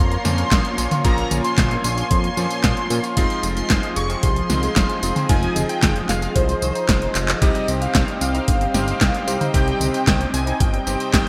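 Italo disco with a danceable, melodramatic mood in a straight four, cut from a longer piece and moving through Bbm, Fm7 and Cm chords. A thick, detuned unison lead with vibrato, ensemble chorus and delay carries the melody over a smooth, warbling analog pad, while a clean, twangy electric guitar with an envelope filter plays delayed arpeggios and a clangy electric grand piano adds stabs in the background. A glossy, tube-saturated synth bass and a thumpy electronic kick sit alongside a punchy, up-front house kit of handclaps, hi-hat, snare, tambourine and toms with gated reverb, which plays a fill at 7.2 seconds, all in a bright 1980s-style digital production.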